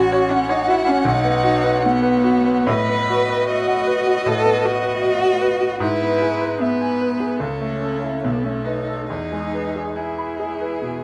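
Violin, cello and piano begin together in this tender, serene passage of slow romantic chamber music, a short stretch taken from a longer piece for piano trio. The violin carries the melody in a close, expressive voice, bowed with vibrato, a soft attack and gentle portamento sliding between notes. Beneath it the cello sings a second line, placed up front with its own vibrato and portamento, giving the lower voice a rich, singing quality. The concert grand piano supplies the accompaniment with a bright, brilliant tone, reaching down into a deep bass and sitting present and forward in the mix. The metre is a flexible, rubato four, and the harmony moves through a short chain of chords to settle on a home chord near 9.1 seconds, all set in a moderate studio reverb that lends a sense of space.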